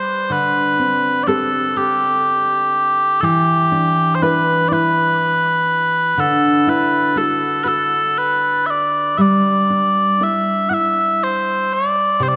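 Set in a rubato 6/8 with the dotted quarter moving at a slow 40 BPM, this Celtic folk slow air drifts freely in G major, tuned slightly low to A4 = 439 Hz. Mellow small bagpipes carry the melody throughout, a sweet, continuous solo line sitting up front between G4 and F#5. Beneath them, a dark classical nylon-string guitar accompanies from start to finish, fingerpicked between C3 and B4, with audible finger squeak that adds an intimate, human touch. The harmony moves through D7sus4, Em7, Dadd9 and G5, arriving at G5 at 9.2 seconds. A lush church reverb with a four-second tail surrounds the playing, lending this pastoral, tender fragment of a longer piece a spacious, devotional glow.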